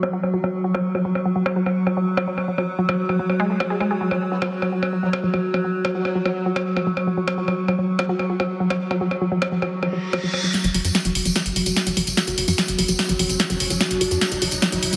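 A punchy techno drum kit with warm, filtered hats drives this alien 147 BPM psychedelic trance excerpt alongside a detuned, ring-modulated unison pluck riff and an evolving wavetable pad, with a formant-sweep wobble bass surfacing briefly in the background at 4.3 seconds, and a reverse cymbal and riser leading into a build-up at 10.5 seconds, where a jingly tambourine, a dark, saturated sequencer bass and a drum fill arrive, all bathed in lush hall reverb with a heavily compressed radio sound.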